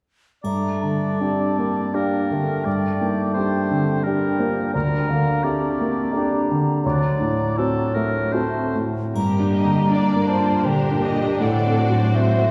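Romantic classical music for piano and orchestra in a rubato triple metre, tragic and brooding, opens with a smooth, vintage-toned grand piano leading up front over a hollow flute, a clear clarinet, an oboe, a roomy bassoon and a faint triangle, before the woodwinds other than the flute fall away and lush string sections of violins, violas and cellos enter from 9.1 seconds, all heard from further back in a concert hall with a long, wet reverb.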